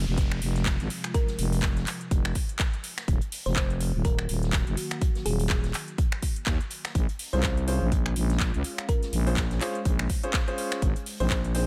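A growling, thick FM bass with sidechain pumping anchors this bouncy, swaggering bass house excerpt at 124 BPM, sitting up front beside a punchy electronic kick, with swung sixteenths over chords moving from Fm to Ebm, Bbm7 and Ab. A house kit of finger snaps, handclaps and metallic hats joins a very quiet acoustic kit of hi-hat and snare, while an airy, detuned sawtooth pad holds sustained chords, a background downlifter ends at 3.1 seconds, and a round, tine-like synth pluck carries the melody through chorus and digital delay. From 7.3 seconds a warm concert grand piano adds open, long-sustaining stabs with sidechain pumping and delay, and the mix sits in studio reverb.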